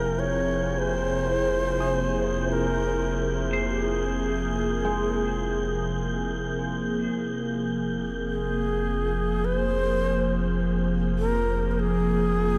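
Melancholic and serene, this ambient passage unfolds slowly in a straight 4/4, cut from a longer piece and bathed in a huge, wet reverb that gives the production a dark, warm glow. Up front, a breathy, bright shakuhachi carries the melody with a bamboo, reedy tone, tongued notes and vibrato, trailed by a diffuse ambient delay. Beneath it an evolving wavetable pad of detuned, morphing unison voices sustains the chords with slow attacks, chorus and long releases, while a round sine sub bass holds a deep low F. In the background an analog drone warbles with a vintage, wave-folded, mellow character, and a wind-like tuned noise layer adds an airy shimmer high above. A clean, hollow-body electric guitar slips in at 1.8 seconds with fingered arpeggios through phaser and delay, falling silent at 8.7 seconds as the harmony moves from C7b13 over F to Bbsus2 over F at 7.1 seconds.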